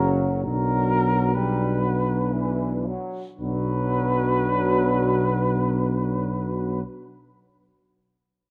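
A mellow cornet carries the melody up front, its soft attack and vibrato sounding distant and roomy as it sings over a hymn-like classical brass band setting in B minor. The mood is elegiac and yearning, in 3/4 at a rubato 55-74 BPM, and the music slows through its opening 3.4 seconds before a second section begins. Beneath the cornet, a dark French horn section with light vibrato sits in the background on a second line, while a clear, vintage-toned trombone section and a very quiet warm solo trombone fill out the accompaniment. The tuba anchors the bass up front with a smooth top and gentle vibrato, and a B minor chord sounds at 0.5 seconds. Close, detailed microphones capture the band in a moderate scoring stage reverb, and in this short fragment of a longer piece all the parts play until 6.8 seconds.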